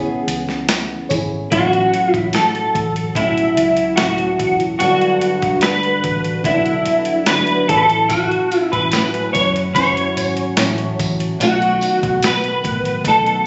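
Indie bedroom pop excerpt at a laid-back 73 BPM in A major, where a slightly broken-up electric guitar melody through a small old amp sits up front with tape echo from 1.5 s over a thumb-plucked nylon-string guitar with finger squeak and lush chorus, a round foam-muted picked bass, a gritty pitched-down boom bap kit with thumpy kick and high-tuned snare, a jingly tambourine and a warbling detuned pad in the background, all moving through Amaj9, A6, Gmaj7 and B7 with a nostalgic, lo-fi phone-in-the-room sound capped below 7.9 kHz.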